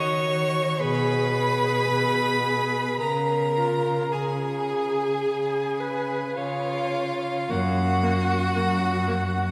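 A long, wet church reverb surrounds this short cut from a slow, romantic classical movement for string quartet, unfolding in 4/4 with a tender, serene rubato feel. The first violin carries the melody high above, its bowed line smooth and sung with vibrato. The second violin traces a second line beneath it, sounding more distant in the space. The viola fills in the accompaniment with a focused tone, and the cello holds the bass close and up front, even and rich. The harmony moves from D#m7 through G#m/B to C#, then falls away at 7.5 seconds as the music turns toward a new passage. The viola drops out at 9.2 seconds, just before the others close out at 9.5 seconds.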